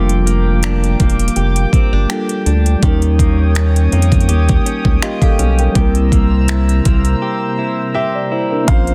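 Trap drums set a relaxed 82 BPM groove in 4/4 with a light 16th-note swing, their knocking kick, metallic hi-hats and finger snaps arriving at 0.1 seconds, up front and overdriven with soft clipping on the snare. This smooth, tender contemporary R&B excerpt moves through Bb6, Eb7 and C7 chords. A rubbery, hollow square-wave bass anchors the low end with a bouncy, dark filter pluck, sitting loud in the mix beside the kit. A mellow tine electric piano carries the accompaniment. A shimmering, retro pulse-width pad holds sustained chords alongside it with a slow attack and chorus. A clean, direct-recorded electric guitar picks compressed arpeggios through harmonic tremolo and digital delay. After a break begins at 7.2 seconds, a clear baby grand piano enters at 7.9 seconds with a brief, natural-sounding melody, all within a dry, dense and heavily limited modern master.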